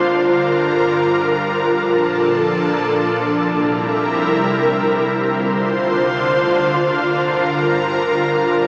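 A gritty hardware sound colors this short cut from a longer hip hop piece, carrying cassette tape grain and the boxed-in tone of a small speaker, all set inside a lush hall reverb with a 2.7-second decay. The mood is hazy and ethereal, and the music floats in free time. A single airy pad plays alone from 0.0 to 8.7 seconds, sitting up front and spanning D2 to C5. Its detuned sawtooth and triangle layers, joined in unison with a noise layer, rise on a slow attack, sustain and fade out on a long release, thickened by ensemble chorus and its own built-in reverb. The harmony drifts from Gm7 through Bbmaj7 and C7, then shifts at 5.0 seconds to Dm7 before settling back on Gm7.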